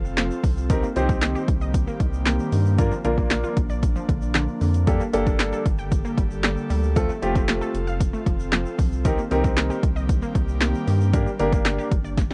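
Punchy, overdriven analog drum machine kicks, snares, hi-hats and handclaps arrive at 0.2 seconds to drive this confident, energetic dance-pop excerpt, alongside a thick saturated sub bass, a clear baby grand piano entering at 0.7 seconds, an airy breathy pad with chorus, a lush warbling unison pluck arpeggiating through analog delay, and a grainy tube shaker in the background, with the pad, pluck, bass and piano all pumping to the sidechain over a dry, cassette-dulled sound that ends on a drum fill at 12.2 seconds.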